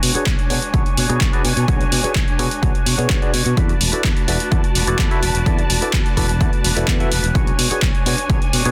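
An overdriven, punchy electronic kick drives this sensual, funky filtered disco house cut at 127 BPM in B dorian, alongside up-front analog drum-machine handclaps and hi-hats, a bright fingered electric bass, a barky tine electric piano through a combo amp with phaser, a twangy envelope-filtered guitar riff and lush bowed strings with portamento over Bm69 and E9sus4 chords, the bass, piano, guitar and strings pumping under sidechain and a low-pass filter while the hats also pump, with a faint electronic swell at 6.6 seconds in a dry, dense, heavily limited mix.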